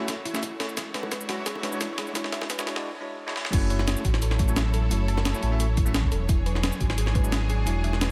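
A bell-like tine electric piano with tape echo, a lush bowed string section pumping under sidechain, and a round, FM-style synth pluck playing arpeggios through chorus and digital delay open this dreamy, rolling liquid drum and bass excerpt in F# minor at 174 BPM. A gritty, pitched-up breakbeat kit sits up front with a high-tuned snare, hi-hat, shaker and crash, all high-pass filtered and set in a large room, while an overdriven, punchy electronic kick drum stays in the background. Tight, hard-hand bongos sit low in the mix, and the harmony moves between F#m7 and E13 as a drum fill drives the build-up toward a brief break at 2.8 seconds. At the drop at 3.5 seconds, a deep sine sub bass with an added octave arrives up front, full and sustained with tube saturation. The kick falls away at 7.2 seconds, while the strings, electric piano and pluck carry on through the close, framed by a filtered digital ambience.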